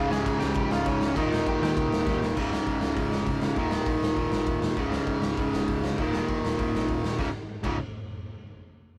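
Punk rock with an upbeat, rebellious drive, this short cut from a longer piece opens with a bluesy, distorted lead guitar melody that plays only until 2.2 seconds, over two low guitar riffs, one bright and up front, the other compressed and overdriven, shifting between Db and Eb chords. Beneath them a growling picked bass with overdrive sits in the background, while a raw garage drum kit, punchy and saturated with a gritty, rolled-off top and a pumping stone-room sound, drives the track and drops in a fill at 2.1 seconds. The whole thing has the rough feel of a rehearsal-room take with moderate booth ambience.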